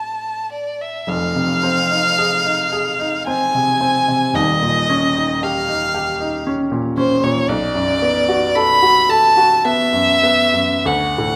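Wistful and hazy, this impressionist classical fragment, cut from a longer piece, drifts in an unhurried rubato triple metre as a single bowed violin carries the melody up front with a rich, focused tone and vibrato. A clear, natural-sounding baby grand piano accompanies close beside it, its short-sustained notes ranging from deep bass to the violin's lower register. Both parts sit in moderate recital hall reverb, and after a brief opening the music settles into a new section at 1.1 s, where seventh and ninth harmonies shift beneath the line until the fragment ends at 11.4 s.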